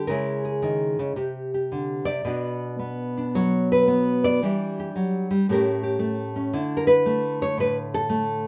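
Solo jazz with a sophisticated mood and a loose swing pulse stretched by rubato, this short excerpt from a longer piece features a bright, fingerpicked nylon-string guitar placed up front in light reverb, its finger squeaks audible as it moves through C#m, Bm and Em7 to an A7b9 that resolves onto Dsus2.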